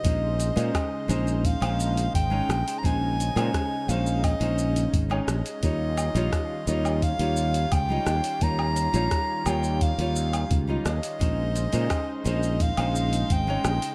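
Wistful and warm, this sunset chillout excerpt moves at 86 BPM in Bb dorian, drifting from Bbm11 to Eb9 and back as a close-miked soprano saxophone sings a jazz-style melody through tape echo. A fingerpicked nylon-string guitar with fresh strings and audible finger squeak sits beside a growly, up-front fretless bass, while a detuned sawtooth pad with chorus hovers softly in the background. Underneath, an overdriven analog kick anchors a deep house kit of hi-hat, rim click, shaker and woodblock, its filtered percussion tape-softened in a dark production with light reverb.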